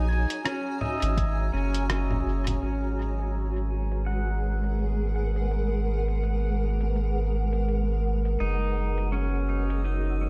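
Hazy and softly reverberant, this meditative, spacious ambient dub fragment, cut from a longer piece, drifts in a lightly swung 4/4. A round, soft sub bass sits up front, while a blurred, granular cloud pad holds sustained chords with a slow attack and long release, its mellow, detuned tone carried in its own built-in reverb. Over it, a clean electric pedal steel guitar plays arpeggios with fingerpicks, slide and volume swells, softened by a low-pass filter and tape echo, and a filter sweep runs across it from 2.6 seconds. A very quiet, bright reversed texture floats through the opening and stops at 2.6 seconds as the harmony moves from F#7 to G#m7 and later returns to F#7. A muffled, pitched-down sampler-style kit of congas, hi-hat and rim click pulses through filtering and dub echo, and an overdriven electronic kick, deep and in the background, appears briefly at 1.2 seconds.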